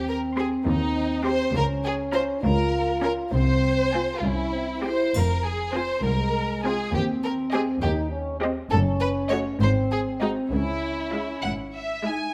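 Up front, an expressive, vibrato-rich chamber violin section carries a second line beneath a focused studio violin melody in this mischievous, sneaky 6/8 film cue at 67 BPM, with a smooth-topped viola section filling in the accompaniment, distant, dark French horns holding sustained chords, a cello section in the background and a bright, lush double bass section on the bass, a triangle sounding at 5.1 s and a mid-forward marimba entering at 12.1 s after the harmony has settled into C# minor, set in a moderate recital hall reverb with a faint mains hum.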